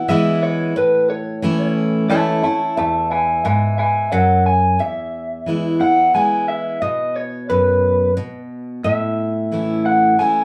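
An easygoing, nostalgic country piece in 3/4 and E major at 89 BPM opens with a twangy, slightly broken-up electric guitar through a small old amp taking a clean solo up front until 4.8 seconds and then carrying the melody on through the end. Beneath it runs a full-bodied, picked steel-string acoustic guitar accompaniment, both heard from further back in a wet studio reverb across this short excerpt cut from a longer piece.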